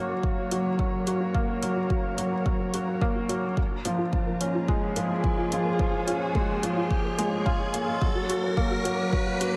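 A felt-muted upright piano sits up front with a mellow, intimate riff, trailed by tape echo, in this hopeful, luminous piano-and-strings electronica cut from a longer piece, moving at 108 BPM in a straight 4/4 in F# major. Behind it, a distant, veiled string quartet plays dark con sordino chords with vibrato that breathe with sidechain pumping, while a very quiet, rich section of bowed double basses holds the low end. A gentle, round synth pluck with chorus spins arpeggios from 0.1 seconds, and a deep, tape-warm electronic kick and a layered electronic hi-hat, both carrying a small-room character, drive the pulse, with the kick sitting prominently in the mix. The whole passage is a build-up, with an electronic riser entering at 3.3 seconds as the harmony moves from F# to A#m7 and back to F# at 8.0 seconds. A moderate concert-hall reverb surrounds the sound, and lossy compression artefacts are audible.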